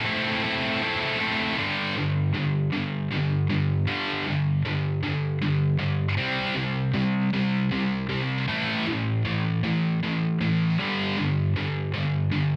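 Rock in a slow 6/8 at 52 BPM, dark and angsty, this cassette-recorded cut features a lone scooped, high-gain electric guitar, bright, picked, double-tracked and up front, moving from an opening A minor through power chords on G, C and A in a modest studio ambience.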